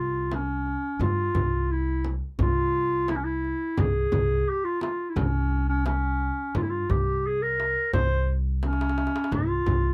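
The clarinet leads this short excerpt from an Arabic maqam ensemble piece, carrying the melody up front in a classical style with a distant, roomy tone that ranges from Db4+20c to C5. The music sits in C maqam hijaz at 87 BPM in a straight 4/4, and the mood is festive. Beneath it, a pizzicato upright bass with steel strings gives a woody, thumpy low end between C2 and G2, also placed up front. The darbuka, with its clay shell and natural skin, and the frame drum, played with hard hands, both enter at 0.3 seconds, sounding large, deep, compressed and saturated, with the darbuka set in the background. A drum fill arrives at 8.6 seconds, and the whole has a dry, close 1970s-style studio sound with little reverb.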